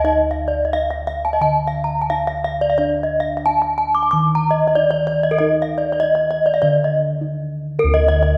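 Balinese gamelan with a ceremonial, shimmering mood, moving at 88-104 BPM in a straight 4/4 in D pelog, cut from a longer piece. A bright, ringing bronze metallophone struck with horn mallets plays arpeggios up front, its paired tuning producing shimmering beats, while round, beating bossed gongs, also up front, carry the bass alongside it from the start to 8.4 seconds. The sound sits in a wet recital-hall reverb, and a break arrives at 6.9 seconds.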